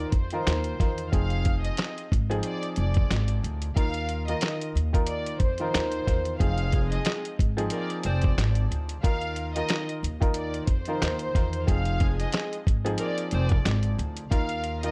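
A small room frames this tough, gritty boom-bap hip-hop loop at 91 BPM in F dorian, where a muffled, pitched-down sampler drum kit with a thumpy kick, medium-tuned snare, hi-hat and handclaps sits up front beside a woody pizzicato upright bass, all riding a light 16th-note swing. An intimate grand piano with audible action noise comps between Ebsus2 and Fm7 while a soft, floating violin section plays a pure sul tasto melody through filters and tape echo. A clear, jazz-style saxophone section with vibrato adds echoing stabs from 6.7 to 13.6 seconds in this short cut from a longer piece.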